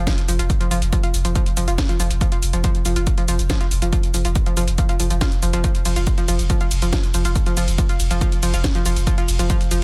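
Driving straight 4/4 techno at 140 BPM, intense and hypnotic, opens with a barely audible sub drop impact as a punchy, layered electronic kick and a techno kit of cracking snare, metallic hats, ride, and shaker, both re-recorded in a small room, drive beneath a round sub bass on F1 with overdrive, low-pass filtering and sidechain pumping, while a bright sawtooth-and-square analog pluck riff between F3 and F4 carries chorus, tube saturation, filter sweep, dub echo and pumping, all in a dry, dense, heavily limited mix cut from a longer piece.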